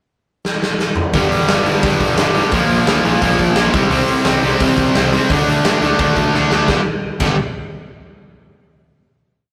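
Punk rock at 173 BPM in a straight 4/4, a short, rowdy and energetic whole piece that opens with a drum fill on the big rock kit at 0.4 seconds before two bright, up-front distorted electric guitars crash in at 1.1 seconds with driving eighth-note power chords through G5, Bb5, C5 and D5, one overdriven and the other distorted and compressed. Underneath, a growly fuzz picked electric bass sits in the background with driving eighth-note lines, while the acoustic kit's punchy kick, medium-tuned snare, toms and bright cymbals push a fast punk groove, with another fill leading into the final G5 chord at 6.7 seconds. The sound is a rough rehearsal-room recording with light reverb and tube saturation.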